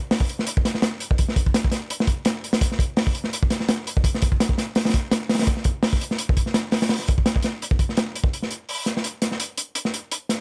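Drum and bass at 168 BPM in 4/4, raw and dark, carried entirely by a crunchy breakbeat drum kit of kick, snare and hi-hat, with a light swing on the 16ths. The acoustic kit sits up front in a small, dry room, sounding saturated and gritty with a tight kick, a medium-tuned snare and a rolled-off top. Cut from a longer piece, the drop drives the first 8.3 seconds before a new section takes over and runs to the close at 10.4 seconds.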